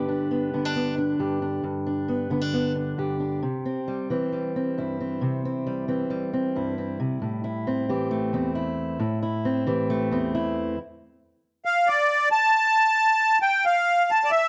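Uplifting and anthemic, this folk excerpt moves at 135 BPM in a straight 4/4, opening with an up-front fingerpicked acoustic archtop guitar that carries the accompaniment through G, C and A minor chords until 10.8 seconds. A build-up begins at 7.2 seconds, and at 11.7 seconds a reedy, sweet accordion takes the melody, its light tremolo tuning and slapback echo sitting close to the listener. Light reverb and a dark, warm production frame the whole passage.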